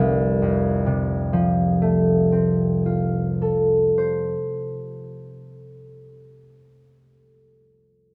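A solo concert harp, thumb-plucked and ringing up front in a dry, close sound, opens this graceful, dreamy classical excerpt in F major, drifting in a rubato 6/8 at about 41 beats per minute across a span from F1 to F5 for just 6.9 seconds.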